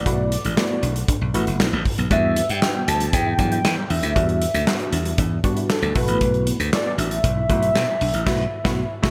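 Late-night and danceable, this short excerpt of early-eighties boogie funk rides a growly, punchy slap bass and an up-front acoustic drum kit with handclaps, crash cymbal and a punchy kick, while a velvety synth lead with chorus and vibrato carries the melody over a dark, detuned polysynth comp and a very quiet, clean electric guitar riff that stops at 8.2 seconds, all moving from B7sus4 to Em9 and back in a bright digital production with light studio reverb before a band accent at 8.3 seconds.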